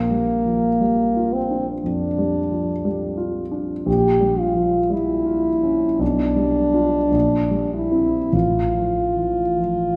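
A lush concert-hall reverb surrounds this brief, serene passage of romantic classical music, cut from a longer piece and tuned slightly above standard pitch at A4 = 441 Hz. A mellow, roomy French horn sings a lyrical solo melody up front while a dark concert grand piano accompanies with an intimate, vintage tone, deep bass and audible action noise, both playing throughout the 10 seconds. The slow 4/4 pulse, around 48-60 BPM, moves with gentle rubato through a harmonic path from Bb6 via Gm7b5/Bb, G7/B and C7/Bb to a close on F/A.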